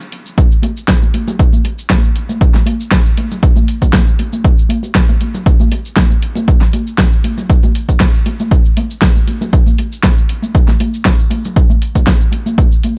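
A deep house drum kit opens alone, its metallic hi-hats, fat snare and cabasa forming a layered, tape-warm groove at 118 BPM with a light 54% swing on the sixteenths. At 0.4 seconds a punchy analog kick arrives up front, carrying a small-room tone, alongside soft-handed vintage congas whose band-limited sound pumps under sidechain compression. The moody, hypnotic house passage stays dry with little reverb and is cut from a longer piece.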